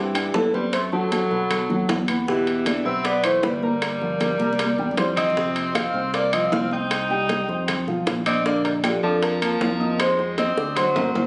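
Sophisticated and danceable, this short Afro-Cuban jazz passage moves at 155 BPM in a straight 4/4 and is cut from a longer piece. A soft, round synth lead with a keys-like FM tone and chorus carries the melody from G4 to G5, its struck notes decaying, while an up-front tenor saxophone plays a clear second line with light vibrato and scooped notes. A dark, mellow upright piano fills out the accompaniment across a broad range, its woody, boxy sound carrying audible action noise and long sustain, and a bright, direct fingered electric bass anchors the low end. The percussion fills in around them: ringing metal-shell timbales, high-tuned congas struck with hard hands, tight and dry bongos, and very quiet woody claves, with drum fills at 4.4 and 10.6 seconds. The harmony travels from C through chords such as B7, Gm7, C7 and Bbmaj7 before settling on Fm7, and the whole recording has the dull, phone-captured quality of a room performance, softened by light reverb and compression.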